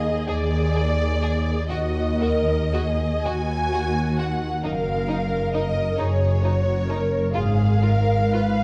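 In a slow, rubato 6/8 that drifts between 37 and 45 beats per minute in dotted quarters, this short passage from a longer romantic movement for string orchestra unfolds in E-flat minor with a yearning, solemn mood. A bowed double bass section anchors the bottom with a dark, lush tone, soft attacks, vibrato and expressive portamento, while the cello section joins the bass register with a smooth, even sound and light vibrato. Above them, the viola section fills in the accompaniment with a rich, vibrato-laden texture. One violin section carries a second line with a warm, even glow, and another violin section, focused and lush but set in the background, traces the melody from 0.3 to 8.4 seconds. The harmony moves from Ebsus4 to Ebm, then to Ebm/Gb and finally Fdim/Ab. A moderate scoring-stage reverb with a two-second tail surrounds the ensemble in a dark, warm production.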